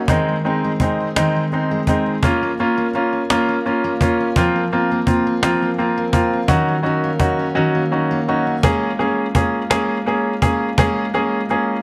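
A six-eight pop ballad cut from a longer piece, this one carries a melancholic, dramatic mood. A picked steel-string acoustic guitar with a jumbo body opens with arpeggios, sounding full-bodied with fresh strings and the occasional finger squeak. At 0.1 s a clear concert grand piano and a cajon join. The piano plays accompaniment, up front and intimate, with deep bass and audible action noise. The cajon sits close and dry, its woody hard-hand strokes carrying faint snares. The harmony moves from Ab through Bbm, Fsus4 and Ebm7 before a new section opens at 8.6 s on Bbm7, the whole mix set in a light studio reverb.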